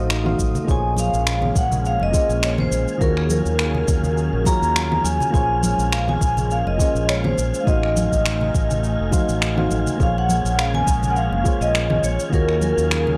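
This wistful, relaxed sunset chillout excerpt opens with a metallic, ringing vibraphone struck with hard mallets, its melody carrying a medium motor vibrato and trailed by analog delay, over soft, round electric-piano-like synth keys filtered and chorused beneath it. A lush, detuned unison pad holds sustained minor-ninth and eleventh chords in the background, thickened by chorus and phaser, while an airy, breathy wind-like texture drifts high above in its own built-in reverb. A mellow fretless electric bass sits up front with a dark, round tone. The groove swings gently on sixteenths, with electronic finger snaps, shaker and congas entering at 0.1 seconds and a soft, tape-colored electronic kick joining at 0.4 seconds, both carrying the ambience of a large room. Close, dry acoustic congas played with hard hands stay tucked in the background, and the overall recording is dry and gritty, as if captured through hardware.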